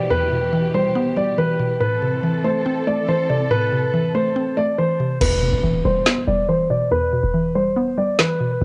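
A lo-fi, cassette-recorded drill excerpt in E minor at 141 BPM with a half-time feel and a dark, ominous mood opens on a smooth, vintage grand piano melody over a round, woody FM synth pluck and a distant, lush bowed string section with vibrato, while a background downlifter sweeps in, until at 5.2 seconds the strings drop out as an electronic impact hits and a punchy, tight sine 808 bass and up-front drill drums with a woody snare and crash arrive.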